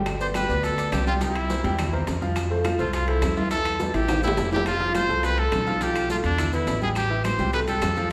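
This driving, danceable salsa excerpt moves at 209 BPM in a straight 4/4, set in A minor and tuned slightly low, cut from a longer piece. A bright, punchy trumpet carries the solo melody up front with vibrato, while a brilliant, intimate upright piano with audible action noise plays the accompaniment and a thumpy, gut-strung upright bass sits up front with dark pizzicato lines. Behind them, ringing congas and tight, high-tuned bongos played with soft hands, metal-shell timbales, very quiet woody claves and grainy, vintage-sounding maracas fill out the percussion. The harmony passes through G, C7, Fmaj7 and Em before a drum fill from 4.1 to 4.7 seconds leads into a second section that moves through F, G13/B and E5 to close on Am7. The ensemble sits in a wet recital hall with a reverb tail of about 1.5 seconds, giving the recording the spacious ring of a church or concert hall.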